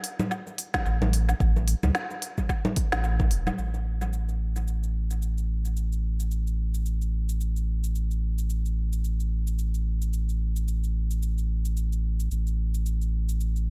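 This earthy, swung organic downtempo fragment opens on an up-front electronic kit of cabasa, congas, crisp hi-hats and a woody snare steeped in tape echo, joined at 0.7 s by a deep electronic kick that drops out at 3.3 s, while a round, sustained sine sub bass with a fast attack and sidechain pumping enters at 0.9 s and carries on beneath the kit in a digital, echo-heavy ambience.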